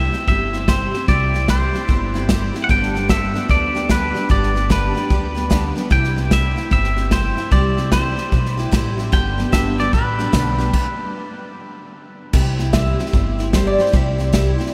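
A swung 4/4 groove at 149 BPM drives this easygoing, sunny honky-tonk and classic country excerpt in C major, where a punchy, airy drum kit, a woody pizzicato upright bass and a full-bodied, chorused dreadnought acoustic guitar with audible finger squeak back a bright, compressed, twangy electric guitar melody up front, until a stop at 10.7 seconds gives way to a short solo from a metallic, nasal lap resonator guitar played with a steel bar entering at 12.7 seconds, all soaked in a huge, dreamy ambient reverb.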